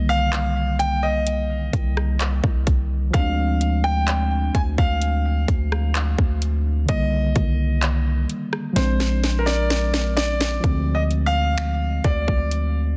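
Sensual and late-night, this contemporary R&B excerpt at a slow 64 BPM sets a natural-toned concert grand piano melody with tape echo over muted, dark synth keys thickened by chorus and a deep, boomy 808-style bass up front, while an up-front trap kit of finger snaps, handclaps, metallic hi-hats, a hard-clipped kick, rim click and a sharp snare with soft clipping enters at 0.3 seconds and plays a fill from 8.8 to 10.6 seconds, all in a dense, heavily limited modern master.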